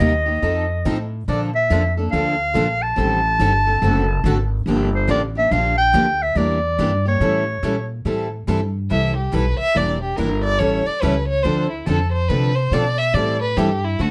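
A clear clarinet carries the melody up front in this cut from a longer acoustic string swing number in the jazz manouche style, its jazz phrasing marked by vibrato and scooped notes until it stops at 7.9 s. The mood is virtuosic and bittersweet, swinging at 142 BPM in 4/4, with the opening moving through chords such as F7, Bbmaj7 and D7 before the music settles into A minor over Am9, Em7b5 and A7. At 8.9 s a bowed solo violin enters up front, its warm, expressive tone full of vibrato and portamento, with a smooth top end. Underneath, two picked steel-string acoustic guitars supply the accompaniment throughout: one parlour-toned with fresh strings, the other a brighter plugged-in auditorium guitar with audible finger squeak. A pizzicato upright bass on gut strings sits up front, woody and thumpy. Close, detailed microphones capture the players, with a touch of light reverb.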